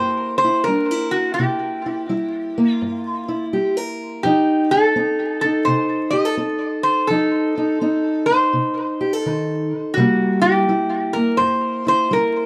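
A swung 4/4 groove at 84 BPM sets a laid-back, soulful pace for this short acoustic country blues passage in C mixolydian, cut from a longer piece and moving from C7 to F7 at 4.2 seconds and back to C7 at 10.0 seconds. Up front, a lap resonator guitar carries the melody with slide and fingerpicks, its metallic, nasal voice touched by tape echo, while a fingerpicked steel-string parlour guitar supplies a dark, boxy accompaniment throughout. Moderate studio reverb and a layer of vinyl crackle give the recording an aged, intimate character.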